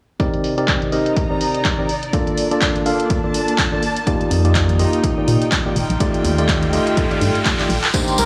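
This deep house excerpt has a smooth, warm mood, set over a swung 4/4 groove. A clean tine electric piano plays up-front stabs through sidechain pumping, a low-pass filter and tape echo, moving through a progression that opens on Cm9. Beneath it, a dry, punchy electronic kick and an analog drum machine with handclaps and filtered hi-hats drive the beat, while a dark, bowed string section adds an intimate texture that also pumps with the kick. At 4.3 seconds a hollow, organ-like FM bass enters with tube saturation, and an electronic riser builds in the background from 5.7 seconds as a drum fill leads into the next phrase. At 7.9 seconds a detuned, vintage analog pad with chorus and a jingly acoustic tambourine join, and a breathy, flute-like synth lead with analog chorus appears just before the cut. The gritty hardware recording is dry overall, with only light reverb and digital ambience.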